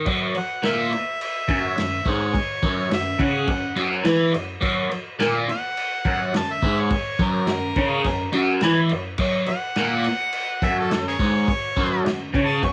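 Raw and swaggering, this garage rock excerpt struts along at 105 BPM in a straight 4/4, sitting in F# mixolydian on a single F# chord. A crunchy, double-tracked electric guitar opens the riff at 0.0 s with picked, overdriven tone and a phaser, joined at 0.1 s by a muffled vintage acoustic kit with a tight kick, a medium-tuned snare, dark crash cymbals and a rolled-off top in a small room. From 0.4 s an amplified, gritty harmonica takes an up-front solo with light vibrato, tongue slaps and scooped notes, all captured as a lo-fi home cassette recording with little reverb.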